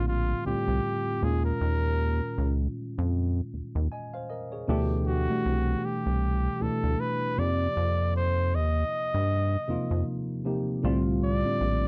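A dry, close 1970s-style studio sound frames this late-night, introspective neo-soul R&B fragment with a lilting sixteenth-note swing, where a smooth-topped flugelhorn with light vibrato carries the melody over a worn, slightly out-of-tune tine electric piano bathed in lush chorus, while a rubbery, hollow square-wave bass sits a touch louder beneath them as the suspended ninth chords drift from C9sus4 through Eb9sus4, D9sus4 and F9sus4 before returning to C9sus4.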